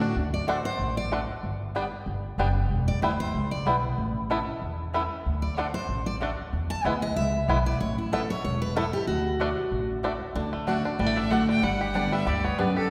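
Bluegrass in D major at a swung 188 BPM, rustic and virtuosic, this short cut from a longer piece features a bright, up-front picked dreadnought guitar taking a solo from 0.2 to 10.4 seconds over twangy fingerpicked banjo arpeggios, round double-string mandolin stabs and a woody, thumpy pizzicato upright bass on gut strings. At 11.0 seconds a single bowed fiddle enters with a biting, earthy melody touched by light vibrato, sitting distant in the mix. The whole ensemble rings in the wet reverb of a church or concert hall, moving through D, G, Em and Aadd9 changes.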